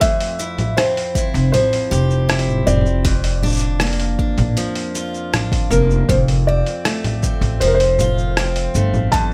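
Playful and pastoral, this folktronica excerpt moves at a straight 79 BPM in F major, with a soft, boxy felt-muted upright piano carrying the melody over bright picked steel-string acoustic guitar arpeggios touched by tape echo and finger squeak, a deep electronic kick, and a muffled, overdriven lo-fi sampler-style kit of congas, hi-hat, rim click and shaker up front, while a woody pizzicato upright bass joins at 1.3 seconds beneath chords moving from C/F to Bb/F to F, all set in light reverb.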